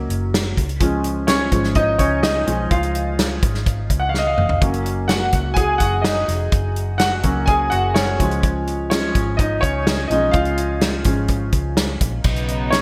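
Piano-driven pop with a hopeful, anthemic lift, this bright 1980s-style excerpt features a clear, polished baby grand piano with lush chorus up front over a dark, foam-muted fingered electric bass and a punchy, gated-reverb acoustic drum kit that throws in a fill at 4.1 seconds, moving between F# and C# before warm, bowed symphonic strings arrive at 12.2 seconds on a Badd9 chord.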